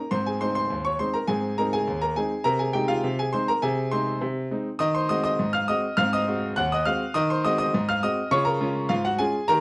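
Cheerful and playful, this short cut from a longer solo ragtime piano piece moves at 102 BPM in a straight 2/4, with a clear, smooth, vintage-sounding grand piano of short sustain sitting up front in a wet studio reverb, ranging from Eb2 to Gb6 as the harmony begins in Ab major, passes through Ab7 chords and shifts toward Db major from 4.8 seconds, landing on Db at 8.3 seconds.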